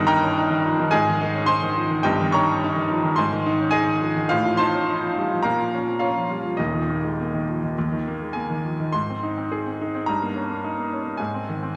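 Bathed in a two-second concert hall reverb, a clear, polished grand piano sits up front with its action noise audible as it plays a heroic, sparkling classical virtuoso study alone in Ab major at 106 BPM in 4/4 with rubato, tuned to A4 = 443 Hz and ranging from Eb1 to Db6, its harmony reaching Ebsus4 before a new section begins at 8.9 s in this 11.8-second cut from a longer piece.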